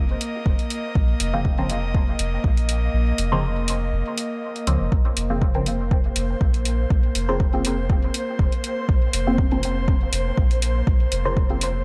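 A lightly swung groove from an overdriven, up-front kick and hi-hat drives this hazy, cavernous dub techno excerpt, with the kick dropping out between 2.9 and 4.9 seconds. A round, soft sub bass and muted, detuned chord stabs, colored by phaser, cassette tape grit and dub echo, pump against the beat beneath an airy, breathy pad of sustained chords with chorus. From 6.8 seconds a very quiet, flickering grainy texture drifts in, all set in a light digital ambience within an echo-heavy mix.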